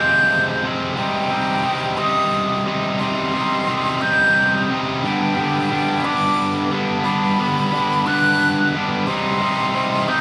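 Rock in a slow 6/8 at 59 BPM, this brooding, cinematic build-up cut from a longer piece runs 10.2 seconds, with a sludgy, double-tracked overdriven electric guitar riff sitting up front in the low register while a breathy jazz flute carries the melody high above with vibrato, a crisp chiffy attack and lifted highs, the two moving through Fmadd9, Cm and G in a wet, live-sounding room.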